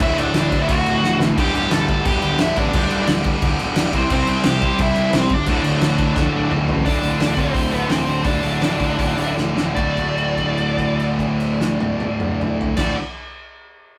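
Rebellious and upbeat, this punk rock excerpt charges along in a straight 4/4 at 148 to 176 BPM in D mixolydian, cut from a longer piece and captured in a rough rehearsal-room recording with moderate studio reverb. A dark, smooth lead guitar with overdrive carries the melody over a thick bed of riffing: two bright, picked distorted electric guitars (one sitting in the background, the other very quiet) and a double-tracked, warm overdriven semi-hollow guitar that drops out at 6.8 seconds. Underneath, a growly fuzz bass, played with a pick and recorded direct and amped, drives the low end. The loose indie drum kit sits up front with a punchy kick, fat snare, dark cymbals and a pumping room sound, throwing in short fills. The chords move from D through G over D and C, then shift to a D power chord as the tempo slows down from 6.9 seconds. The excerpt closes on a held note over D from 9.8 seconds.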